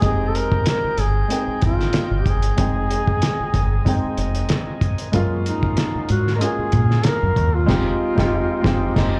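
A mellow, up-front duduk sings a bittersweet, cinematic melody with vibrato and scooped notes over lush 1970s-style soul, backed by a dark concert grand piano, a thick, overdriven tonewheel organ on slow rotary speaker in the background, a round, punchy dub electric bass and a muffled, cloth-damped drum kit with a fat snare, while a delicate, bell-like celesta sounds very quietly only in the first 0.9 seconds and the band hits an accent at 7.7 seconds, all heard as a live gig through the venue's PA in this short cut from a longer piece.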